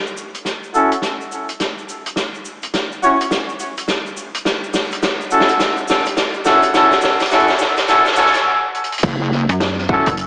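Soaked in lush hall reverb and vinyl crackle with a small-speaker tinge, this swaggering, playful glitch hop excerpt builds with a grainy tube shaker in the background, an open jazz drum kit with dark cymbals playing fills, and up-front, smooth-topped horn stabs swept through a low-pass filter with tape echo and sidechain pumping, until a stop at 8.5 seconds gives way at 9.0 seconds to a drop where a punchy electronic kick and a heavy, detuned wobble bass with chorus come in, followed at 9.5 seconds by a snappy, metallic FM bass.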